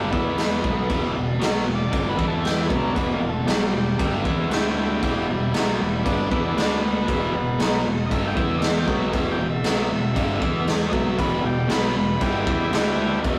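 Garage rock with a gritty, swaggering attitude, this short excerpt rides a straight four-beat pulse and stays on a single section built around E minor with brief shifts to a D power chord. A buzzy, vintage transistor combo organ carries the melody as a solo throughout, its clean tone coloured by spring reverb. Underneath, a double-tracked fuzz guitar sits up front with a distorted, picked riff, while a growling fingered bass, overdriven and bright, stays in the background. The raw drum kit, entering at 0.1 seconds, is punchy and saturated, with a medium-tuned snare, dark cymbals and crash cymbal, its rolled-off top set in a bright stone room. The whole thing has the rough sound of a rehearsal room, with moderate small-room reverb and warm saturation binding the parts together.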